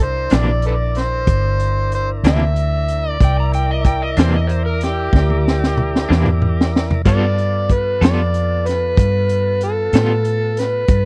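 A laid-back 12/8 slow blues at 62 BPM rolls along in C mixolydian, its crunchy breakbeat kit setting a rollicking sway with a punchy kick, a high-tuned snare and dark cymbals in a small-room sound, plus a drum fill around 5.1 seconds. The foam-muted electric bass sits up front with a round, amped tone, while a tonewheel organ holds smooth sustained chords through a slow rotary speaker as the harmony moves from C9 to G9. Leading the way is an amplified harmonica, gritty and close, playing a jazz-style solo full of tongue slaps, scooped notes and light vibrato. A twangy, slightly broken-up electric guitar picks its accompaniment through a tremolo effect, and an overdriven slide guitar adds a fingered second line from 3.2 to 6.7 seconds. The whole short cut has the dry, close feel of a 1970s studio, with barely any reverb.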